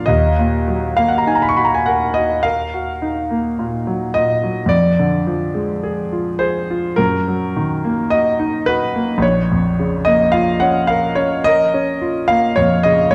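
A concert grand piano plays alone for the full 13.1 seconds of this fragment, its tone clear and intimate, with a worn character, audible action noise and a deep, natural bass set up front. It is a romantic classical nocturne in Eb minor, yearning and mournful, moving at a slow 53 BPM in 4/4 with a rubato feel, and tuned to A4 = 439 Hz. The writing spans Bb1 to Db6. The harmony moves from Ebm to Ddim/F at 4.7 seconds, then through Ebm/Gb to Bbm at 9.2 seconds. The piano's short sustain sits inside a wet recital hall reverb of about 1.4 seconds, and the production has a dark, warm cast.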